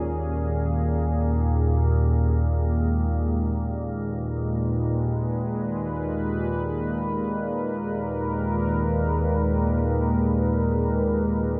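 In free time, this dark, cavernous ambient drone excerpt sets a calm, sine-toned organ-like drone with ensemble chorus, built-in reverb and phaser low and up front beneath an evolving, detuned sawtooth pad with chorus and a filter swell holding sustained chords from Eb5 into Abm at 2.6 seconds, while a barely audible quartz singing bowl adds a pure, slowly beating ring under a huge, dark reverb.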